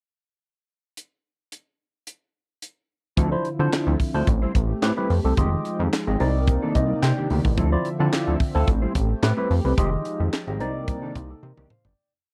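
Up front, a glossy, nasal chorused synth bass drives this early-eighties boogie funk piece at 109 BPM, playing a fat syncopated line with slides over a tight funk kit whose high-tuned snare is layered with handclaps in a mid-tempo boogie beat. After a drums-only pickup bar, the verse arrives at 3.2 seconds with barky tine electric piano stabs through a phaser, choppy sixteenth-note strokes from a dark, mellow guitar with ensemble chorus, and a shimmering pulse-width pad sustaining jazzy ninth chords in the background. The dry, close mix keeps the funky, danceable mood tight, with a short electric piano fill at 6.5 seconds before a fade-out and a final drum fill close the piece.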